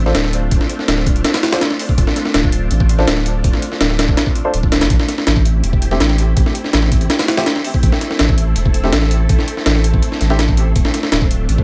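A straight 4/4 breakbeat drives this dark, atmospheric drum and bass excerpt at 164 BPM in A minor, cut from a longer jungle piece. The sampler-style kit sits up front, compressed, pitched up and grainy, with a thumpy kick, a high-tuned snare, a tape-tinged character and a touch of studio reverb. Beneath it, a deep, thick sine sub bass holds the low end between D1 and A1, saturated and sustained with a fast attack. A soft vintage string machine spreads silky, warbling chords with a slow attack, long release and ensemble chorus, moving from Dm7 to Am7 at 4.9 seconds and back to Dm7 at 10.8 seconds. In the background, warm grand piano stabs carry 12-bit sampler grit and dub echo until 10.4 seconds, while the room around the mix stays close and dry.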